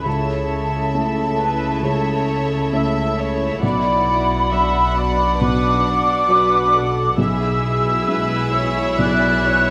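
An intimate, felt-muted upright piano with audible action noise opens this longing, bittersweet orchestral film cue alongside a floating, distant violin section carrying the melody, a woody, lush second violin line, a mellow, hollow flute section above, smooth-topped viola accompaniment and rich cellos in the background, with dark symphonic double basses joining at 0.1 s, the whole phrased in loose rubato within a reverberant scoring-stage space.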